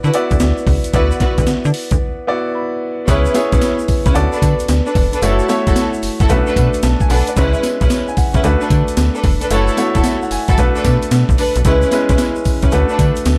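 A gritty, sampler-style breakbeat kit with a thumpy kick and high-tuned snare sits up front in this confident, punchy new jack swing excerpt at 112 BPM in B dorian, swung on the sixteenths, alongside a snappy, metallic FM slap bass and a clear, polished baby grand piano. Dark, woody string stabs with a digital delay hover in the distance, while a grainy tube shaker stays in the background. After a break from 2.0 to 3.1 seconds that carries a piano fill, the groove settles into a cycle of C#m7, Bm7/D, F#m7 and Bm7.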